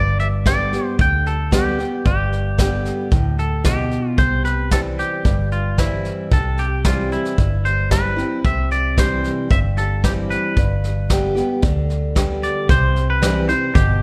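A bright, twangy electric guitar carries the melody up front in this sunny, easygoing honky-tonk and classic country excerpt, over a warm picked steel-string acoustic guitar, a dark, round, foam-muted fingered electric bass and a soft brush drum kit with a punchy kick and roomy, distant sound, all set in light reverb as the chords move from G to C and back before a brief new section on C at 12.7 seconds.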